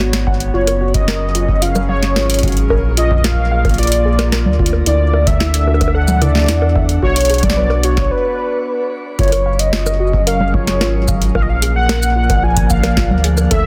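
A velvety, detuned synth lead with vibrato, chorus, delay and shimmer reverb carries the melody from 0.5 seconds in this wistful, glitchy IDM excerpt at 111 BPM in F# major, set over a warbling, nostalgic tape-like pad that pumps with sidechain, a dusty lo-fi pluck playing arpeggios in the background, a round, dark analog bass with tube saturation up front, a booming analog drum machine with tonal snare, metallic hats, bongos, congas and shaker, and a deep electronic kick entering at 0.3 seconds, all moving through chords such as F#maj7, A#7 and Dadd9 with a brief break at 8.1 seconds in a dense, heavily limited modern mix.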